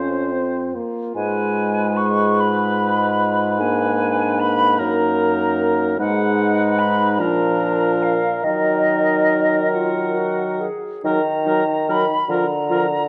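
In a rubato 6/8 lilt, this slow, yearning and solemn classical movement for wind quintet opens with a soft-edged oboe, a bright, close-miked clarinet, a clear French horn and a roomy bassoon bass, before a pure, vibrato-rich silver flute enters at 1.2 seconds with an expressive melody, heard in a dark recital-hall acoustic.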